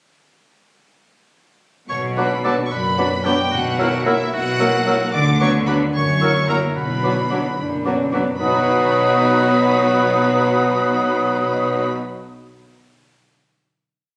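Heard through a phone in a reverberant recital hall, this playful, mischievous film cue in 6/8 at 74 BPM moves from Bm to a closing B major chord that rings from 8.4 seconds, with a rich chamber violin section carrying a smooth-topped melody that a clear oboe doubles at the octave, while a bright, close cello section holds the bass on the beats and a background double bass section doubles the bass line, a mellow harp rings soft broken chords, and from 2.2 seconds a distant symphonic violin section, a lush viola section, an airy flute, a background clarinet and a bassoon add after-beat and sustained chords as a dark French horn section answers at phrase ends.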